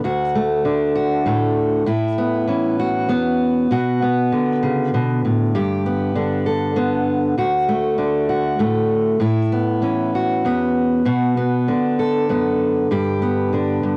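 In a rolling 6/8 with a straight, unhurried pulse of dotted-quarter beats, this folk piece carries a hopeful, anthemic mood. A lone fingerpicked steel-string acoustic guitar plays from 0.0 to 14.0 seconds, spanning low D2 up to A4 and sitting up front in the mix. Fresh strings give the guitar a warm, lively tone, and finger squeaks add an intimate, human touch. The harmony moves through D, Aadd9, Bm and G, then repeats the same progression from 7.4 seconds. Light reverb surrounds the playing, and the home cassette recording lends the sound a homespun character in this passage cut from a longer piece.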